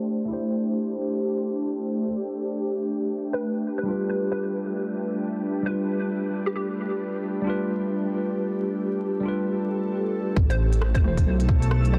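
Future garage at 134 BPM in A minor with a swung 16th feel, this nocturnal, melancholic excerpt opens on a worn, slightly out-of-tune tine electric piano with analog delay and an ethereal, airy pad carrying chorus, phaser and a filter sweep, both pumping against the sidechain over Am7 and G7. A hollow, warbling square pluck with tape echo adds a quiet melody from 3.3 seconds. At 10.4 seconds a tight electronic kick and a deep, rumbling detuned saw bass arrive up front, joined by smooth hi-hats, a rim click, a soft-clipped snare and a faint reversed, dreamy granular texture, all under a dense, heavily limited master with vinyl crackle and a low-pass filter.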